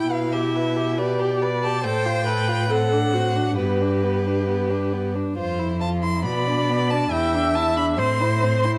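This quick classical-period movement for string quartet, cut from a longer piece, feels urgent and stormy, its pulse pushed and pulled with rubato. A violin with a rich, even, vibrato-laden tone carries the melody up high, while a second violin sings a warm inner line marked by expressive portamento and a smooth top. Beneath them, a focused, close-sounding viola supplies clear accompaniment, and a full-bodied cello sits up front on the bass with a smooth, even, vibrato-coloured sound. Every instrument plays throughout the roughly 8.8 seconds, moving through harmonies such as G/B, D7/A, Bm7, Em7 and a closing Am. A moderate recital hall reverb gives the ensemble a natural sense of space, with the quartet tuned to A4 = 439 Hz.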